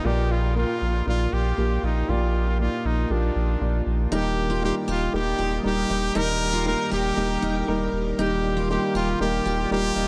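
A brilliant, close-miked trumpet carries the melody up front with vibrato in this uplifting pop excerpt, backed by an intimate, woody upright piano whose action noise is audible and a deep, round sub bass. At 4.1 seconds a very quiet, evolving, detuned pad enters, joined by a bright, picked steel-string acoustic guitar riff with lush chorus sitting in the background. A huge ambient reverb soaks the whole mix in a dreamy haze.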